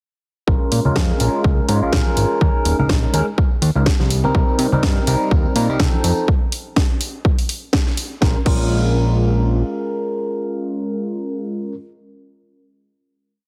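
A barky, gritty tine electric piano, overdriven through a combo amp with phaser and a pumping low-pass filter, drives a rhythmic chord riff over a fat, detuned sawtooth bass playing a funky syncopated line, a punchy four-on-the-floor electronic kick, a house kit with a cracking snare, hats and crash, and background tambourine and congas in this sensual, funky filtered disco house piece at 124 BPM in Bb dorian, whose groove gives way at 8.2 s to a final Bbm7 chord that the piano holds until 11.7 s, the mix carrying a heavily compressed radio sound.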